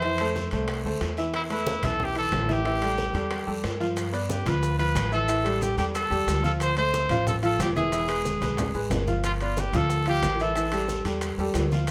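Fiery and driving, this short salsa passage, cut from a longer piece, moves in a straight four with a bright, punchy trumpet up front carrying the melody, its light vibrato and vintage pop-style tone set in plate reverb. A clear, slightly worn grand piano also sits up front with short-sustained accompaniment, while a woody, thumpy upright bass plays pizzicato on gut strings, dark and low. The percussion bed is layered and mostly recessed: low-tuned congas with a thin skin, very quiet high-tuned bongos played with soft hands, ringing metal-shell timbales heard from a distance, and a raspy guiro far back in a large room. Grainy, mellow maracas join at 4.0 seconds, and a drum fill between 8.3 and 9.2 seconds pushes toward the close, where the trumpet drops out at 11.1 seconds. The harmony shifts among major-seventh, suspended, power and dominant-seventh chords, and the whole sits in a moderate studio reverb.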